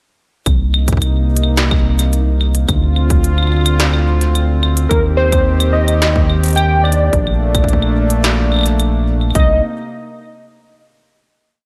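This short IDM piece has a cerebral, melancholic mood, built on a straight 4/4 groove that runs until 9.4 s before settling on a final Cm7 chord. A heavy electronic kick plays a broken pattern, while an industrial kit adds a clanging snare, crisp closed hats and claves in a glitched, ever-changing beat; both were re-recorded in a large room. Alongside them, a deep, round analog bass holds sustained roots up front, and a smooth, slow-attack pad with chorus carries the chords from Cm7 through Dm7, Eb6 and Bbmaj7. At 4.9 s, warbly lo-fi synth keys enter with a nostalgic, mellow melody of arch-shaped motifs, colored by ring modulation, a sub octave, a filter sweep, chorus and digital delay. The mix has light reverb and a bright 1980s-style digital sheen, marked by lossy compression artefacts.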